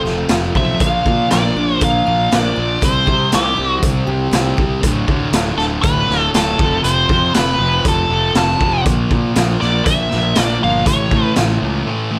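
Quiet-loud alternative rock with an anthemic, cathartic mood, this cut from a longer piece is built around a lead electric guitar solo. Up front, a nasal lead guitar with a parked wah carries the melody from 0.6 seconds, its overdriven tone touched with slapback echo. Behind it, a dark, sludgy distorted guitar and a bright, thick fuzz guitar push the riff, while a growly, punchy fuzz bass, fingered and overdriven, anchors the low end. A raw garage drum kit sits close in a small, pumping room, with a gritty, saturated sound, a punchy kick, a medium-tuned snare, hi-hat and a rolled-off top. Early on, a picked steel-string acoustic guitar adds fresh-stringed arpeggios in the background until 4.8 seconds, as the harmony moves through F, Bb, C and D5 before returning to F, then Bb5 and A, all under light studio reverb.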